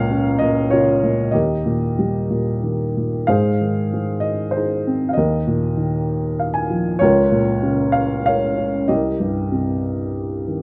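Classical solo piano in a lyrical, relaxed mood, this short excerpt from a longer piece moves in a gentle triple metre with a free, rubato feel. A single upright piano carries everything, its dark, woody tone slightly detuned and natural, with a long sustain that lets chords ring into one another. The playing spans from low C2 up to Ab5, and the harmony drifts through Bbm/Db and Eb before settling on Ab, then passes through Ebsus2 and returns to Bbm/Db before closing on Cm7. The opening phrase is restated from 3.3 seconds, and a brief piano fill at 6.1 seconds adds a touch of ornament. Close, detailed microphones place the instrument up front, with only light reverb around it, giving an intimate and mellow, warm sound.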